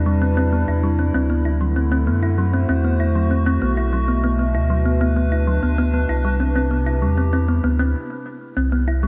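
IDM with a glitchy, playful mood, built from a warbling, nostalgic pad holding lo-fi sustained chords, a round, tine-like thumb-piano-like synth pluck playing gentle arpeggios with tape echo, and a deep, up-front sine sub bass, all moving through Cmaj7, D9, Bm7 and Am7/C in a dreamy mix soaked in lush hall reverb, with a brief stop at 7.9 seconds in this cut from a longer piece.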